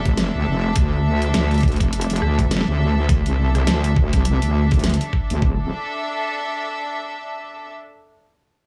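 A heavy, saturated wobble bass with a detuned sawtooth edge anchors this gritty, swaggering glitch hop excerpt in D minor at 103 BPM, pushed up front with a knocking kick and a dubstep kit of huge snare and bright hats over a soft-attack, floating bowed string ensemble that pumps against the beat and plays alone after 5.7 seconds, all in a dry small-room sound.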